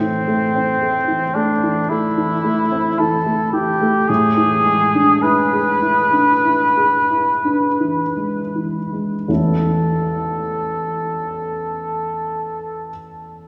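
A trumpet with light vibrato sings a solemn, melancholic romantic classical melody over a baby grand piano whose intimate tone carries audible action noise and short sustain, moving in a rubato 4/4 at 39-56 BPM that slows until 9.3 seconds as the harmony passes from A minor through E7 over A to A major, with the trumpet falling away at 12.9 seconds, the piano closing at 13.5 seconds, and a long cathedral reverb bathing this fragment of a longer piece.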